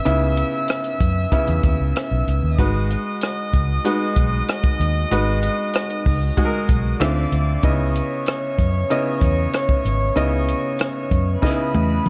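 A dark, round electric bass, foam-muted and punchy, sits up front in this lush 1970s-style soul excerpt, moving between G#1 and F#2 at a relaxed 95 BPM in straight 4/4. Beside it, a compact cocktail drum kit with a high-tuned snare and a punchy kick brings hi-hat, rim click and toms into a dry, close sound, ending in a drum fill from 11.4 to 12.1 seconds. A brilliant baby grand piano with short sustain fills in the accompaniment, while a violin section with a reedy gut-string, period-style tone and a smooth top carries a bowed second line high above, from B4 to E6. The harmony settles on C#m7, shifts to G#m7 at 2.6 seconds, then slips through Dm9 at 7.0 seconds to C#m9 at 7.6 seconds, with the whole tuned slightly low to A4 = 435 Hz. A studio reverb adds a silky, cinematic sheen to this passage cut from a longer piece.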